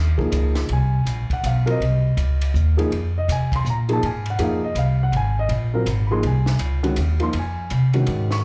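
Modal jazz in F phrygian with a spiritual, hypnotic mood, swinging in 3/4 at 163 BPM over a single Fm7 chord in this brief live club fragment. A dark, mellow concert grand piano with deep bass and slapback echo sits up front beside a woody, warm pizzicato upright bass on steel strings, while a dry compact cocktail drum kit of hi-hat, ride cymbal, snare and kick drum enters at 0.2 s with shadowy cymbals, a high-tuned snare and a punchy kick.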